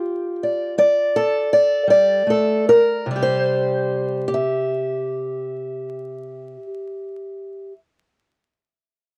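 A boxy, up-front fingerpicked steel-string parlour guitar carries this swaggering, soulful solo acoustic country blues excerpt in C major, tuned to A4 = 438 Hz, moving in a straight 12/8 at about 49-57 BPM, slowing over the opening G5 chord before settling onto C at 3.1 seconds, all set in a dry, close 1970s-style studio sound with light reverb and vinyl crackle.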